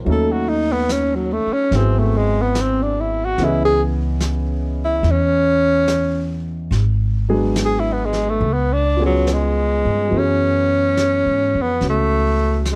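A natural-sounding grand piano opens this melancholic, smoky jazz ballad in C# minor, with breathy tenor saxophone, upright bass and a vintage brush kit joining at 0.1 seconds for a slow 72 BPM swing in 4/4. Up front, the mellow saxophone solos until 10.1 seconds with subtone, vibrato and scooped notes, carried on a slapback echo. Beneath it the woody, dark pizzicato bass moves through altered, minor-seventh and half-diminished harmony toward an F#m11 at 10.1 seconds, while the brushes sit low with a rolled-off top in a pumping small room, all under a light reverb.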